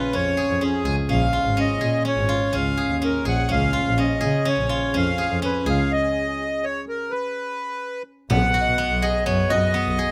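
This shimmering, playful chamber piece in an uneven 5/4 opens with a reedy accordion melody, a fingerpicked steel-string zither and a bowed double bass, all up front. The accordion is full and dry with a slow beating in its tone, the zither's arpeggios ring out bright and silvery, and the single bass player offers a clear, smooth-topped line with light vibrato and an intense edge. The harmony moves from Db to Bbm and back to Db before the music stops at 5.9 seconds. At 8.3 seconds a new section begins on a Cb6 chord, with a small frame drum in the background and, at 8.6 seconds, a very quiet celesta adding a delicate, sweet, bell-like shimmer. The close, detailed microphones capture little reverb, and the passage is cut from a longer piece.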